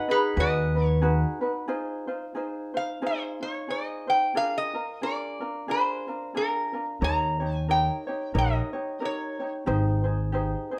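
Hawaiian excerpt at a languid, dreamy 90 BPM in Ab major with a gentle swing, where a nasal, metallic lap resonator guitar played with slide and fingerpicks carries the melody up front over thumb-plucked ukulele, a ringing vibraphone with slow motor vibrato sounds only through the first second, and a woody, dark pizzicato upright bass appears briefly near the start before returning at 7.0 s, all in moderate studio reverb as the chords move through Bb7 and Eb7 to settle on Abmaj7 at 9.7 s.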